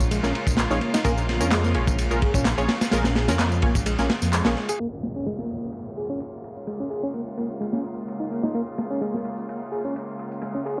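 A swung breakbeat groove at 128 BPM in 4/4 drives this gritty, swaggering Bb minor excerpt, its crunchy, saturated drum kit of tight kick, medium-tuned snare and dark ride sitting up front alongside overdriven electronic tambourine and handclaps, while a deep, rumbling detuned saw bass and muted, plucky dub chord stabs with chorus and tape echo hold down the opening section, punctuated by a band accent at 4.3 seconds. A reedy overdriven electric piano riff with fast tremolo and tape echo runs throughout over distant, gut-toned chamber strings that pump beneath the beat, and an electronic downlifter sweeps from 4.8 to 8.6 seconds in the second section. The whole recording has a dry, cassette-worn, rolled-off sound with a small room ambience.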